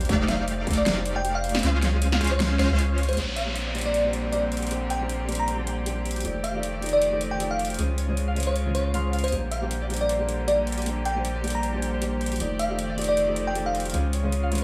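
Euphoric and playful, this half-time, swung future bass fragment opens on a drop where a punchy, detuned supersaw stab riff and a thick, saturated sub bass pump beneath a sparkling, bell-like FM electric piano melody and ringing, fingerpicked concert harp arpeggios. An overdriven big-room dance kit adds a huge snare and metallic hats, while a distorted electronic kick hits only briefly at the start. At 3.2 s the stab gives way to a soft, felt-muted upright piano with audible action noise, distant chamber strings holding rich bowed chords with light vibrato, an electronic downlifter and riser, and a filter sweep across the harp.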